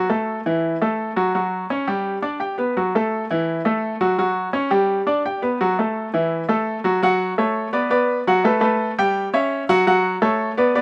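Danceable and sunny, this short Latin fragment features a solo upright piano with a bright, woody, up-front tone and short sustain, spanning from E3 to G5. Recorded outdoors with almost dry ambience, it cycles through suspended Esus24, F#5 and G chords before turning at 7.0 seconds to a passage moving through F#m, Bm, Gadd9 and Em69.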